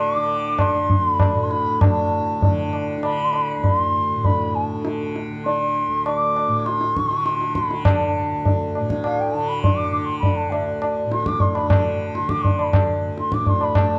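Introspective and meditative, this Hindustani classical excerpt in a 5/4 metre with a straight feel gradually speeds up as a mellow bansuri carries the melody with a pure, bamboo tone, vibrato and tongued, expressive phrasing that sits distant in the sound. A softly plucked tanpura holds a bright, buzzing, shimmering drone underneath from the start, while a high-tuned, ringing tabla enters at 0.6 seconds, compressed, saturated and up front. The dark production places the ensemble in a moderate recital hall reverb, with a brief opening passage giving way at 1.8 seconds to a longer second section.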